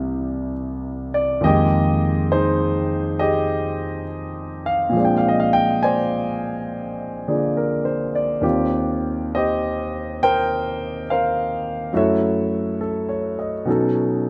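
Smoky and wistful, this jazz ballad moves at an unhurried 69 BPM in 4/4, its eighth notes swung in an easy, late-night lilt in F minor. A single concert grand piano carries the whole piece alone, its clear tone reaching from a deep bass register up into the upper treble. The harmony opens on C7 before settling onto Fm11 at 1.4 seconds, then drifts through Bb9, Eb69 and a darker Gbm7, closing on B9 at 13.7 seconds. The close, detailed microphones keep the instrument up front and natural, with a light reverb adding a touch of air around it. It is a short excerpt cut from a longer performance, ending at 14.3 seconds.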